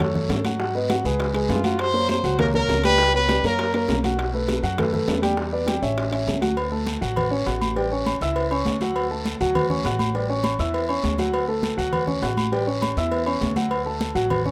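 A straight four-beat salsa groove from thick-skinned congas, tight bongos and cowbell, ringing metal-shelled timbales and agogo bells and a raspy guiro drives this festive, joyful fragment, as a dark, mellow baby grand piano comps up front over a woody, thumpy pizzicato upright bass, and a clear, punchy trumpet with vibrato breaks in forcefully from 1.5 to 4.0 seconds in a roomy, rough home-demo mix with light reverb.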